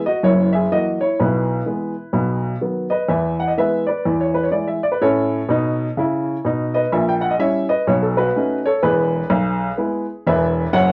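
A woody upright piano sits up front and carries this exuberant, playful stride jazz fragment alone from 0.0 to 10.9 seconds, reaching from the deep bass register up into the upper middle of the keyboard. The tempo swings along at 126 BPM in 4/4, with a gentle lilt on the eighth notes, in E major. An opening phrase turns through F#7, E/B and B before a second pass starting at 3.1 seconds moves from E to A, then through A#dim7 and B9 and back home to E. The sound has the worn, warbling character of old cassette tape, with a pitch drift that lends the piano a slight wobble. A moderate studio ambience gives the instrument a touch of space, and the clip is cut from a longer piece.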